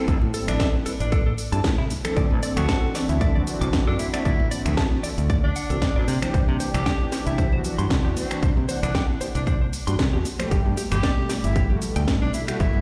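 Played through a big sound system in a bare room and bathed in large studio reverb, this sleek, cosmic nu-disco excerpt at 115 BPM with a light 16th-note swing sets a distant, vibrato-laden tenor saxophone melody with delay over round, detuned synth brass pumping with chorus and digital delay, a clean, compressed electric guitar riff in the background, a bright, punchy fingered electric bass, an overdriven punchy electronic kick, a house kit of cracking snare, hi-hat, finger snaps and cabasa, and hard-handed congas, all drifting through Am7, D9, Cmaj9#11 and Gmaj9.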